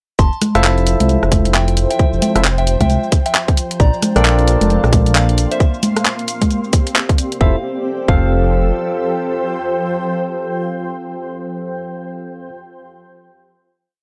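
A dark, rumbling detuned saw bass skips up front through this sunny, bouncy two-step UK garage piece, joined by a tight electronic kick and a garage kit of bright swung hats, rim clicks, handclaps, congas and shaker. Sparse, barky tine electric piano stabs echo through a combo amp, and a soft FM synth bell repeats a background riff in thirds and sixths with chorus, phaser and tape echo. A cloudy granular pad pumps and shifts, a silky, warbling string machine enters at 4.1 s, and the kit stops at 7.4 s to leave a final Fmaj7 chord ringing in a dry, gritty hardware sound.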